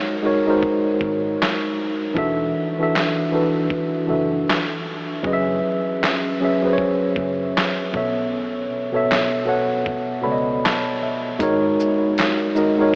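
A lazy 78 BPM groove in 4/4, swung on the sixteenths, carries this nostalgic, mellow lo-fi hip hop fragment cut from a longer piece. A worn, slightly out-of-tune tine electric piano sits up front, clean and direct yet softened by a low-pass filter, laying down lush suspended chords that move from Ab9sus4 through E9sus4, Gb9sus4 and B9sus4 before landing back on Ab9sus4. A compressed, gritty, pitched-down sampler-style boom bap kit joins at 0.6 s, pairing a thumpy kick and medium-tuned snare with handclaps, hi-hat and shaker. A dark, round, foam-muted fingered electric bass slips in at 1.0 s and stays tucked in the background. At 9.9 s the electric piano takes a short fill. The whole mix is dreamy and soaked in a huge ambient reverb, with vinyl crackle and a boxy AM-radio tone.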